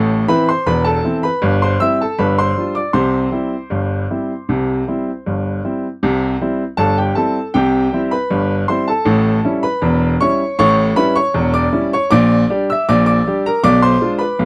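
A dry, close recording in a 1970s studio style, with light reverb around a solo upright piano set up front. This cheerful, jaunty ragtime in 2/4 has a straight feel, and the woody, brilliant piano rings with long sustain across a range from E1 to E6. After an opening phrase moving from Am through C/G and G7 to C, a new section begins at 6.0 s and brings in A7, Gm/Bb and finally Bdim7 before the excerpt is cut off.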